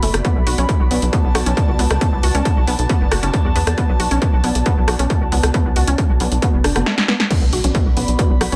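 Intense and dark, this driving peak-time techno cut runs at 136 BPM in B minor, built on an overdriven, up-front kick that enters at 0.2 s, a punchy, overdriven drum kit of crash, hi-hat, rim click and snare, and a tight sawtooth-and-square sequencer bass that pumps under sidechain compression. Above them, a squelchy, resonant blip pluck plays a chorused, tube-saturated riff trailed by dub echo, while an airy, breathy pad with chorus and phaser breathes in a slow-attack haze. A drum fill leads into a drop at 7.3 s, where a very quiet electronic impact lands, all within an echo-heavy mix with light digital ambience.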